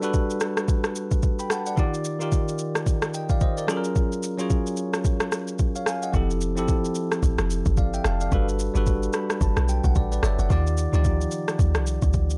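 A bell-like tine electric piano and a smooth, sampler-gritty R&B drum kit of kick, rim click and shaker open this soulful, warm amapiano passage at a swung 110 BPM, moving through lush ninth chords before a deep, round, percussive log drum bass enters at 6.1 seconds and the piano adds a short fill at 8.9 seconds, all captured in a dry, gritty, tape-saturated sound.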